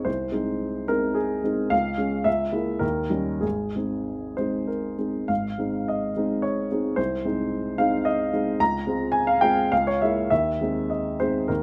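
A close, detailed recording with light reverb places a warm baby grand piano up front, every note clear and intimate. This brief, 11.6-second passage from a longer piece is a romantic character piece for solo piano in Ab major, moving in 3/4 with a flexible rubato between 92 and 114 BPM. The mood is hopeful and lyrical, with the piano ranging from a deep Ab1 in the bass up to Bb5. Its opening phrase moves from Ab/C through Db, Bbm7b5/Db and Eb7 before settling on Ab at 3.4 seconds. At 5.3 seconds the phrase begins again, this time colouring the harmony with a Dbmaj7 and closing on Ab/Eb at 10.3 seconds, leaving the line open as if the music continues.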